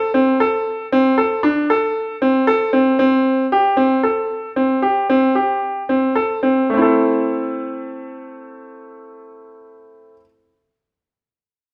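A contemporary instrumental excerpt in A minor, hypnotic and pensive, set in an uneven 7/4 at 113 BPM with a straight feel. A bright grand piano plays arpeggios alone from start to finish, its brilliant, natural tone with short sustain sitting up front in a moderate recital hall reverb. The tempo slows between 2.5 and 6.7 seconds as the harmony moves from unaccompanied notes to Am7 and settles on A minor.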